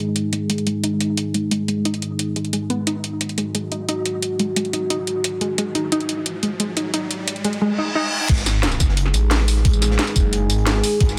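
A swirling, phased detuned saw bass bursts in up front at the 8.3-second drop of this tense, mechanical dark technical drum and bass cut at 177 BPM, joined by a knocking electronic kick and a gritty breakbeat kit tucked in the background. Before it comes a build-up in which a deep, moody analog pad and a warbling, lo-fi pluck arpeggio with delay pump under filter sweeps over an up-front kit of cracking snare, metallic hats, tambourine and crash, while a riser swells from 5.0 seconds and hands off to a reverse cymbal at 7.6 seconds, all set in light reverb.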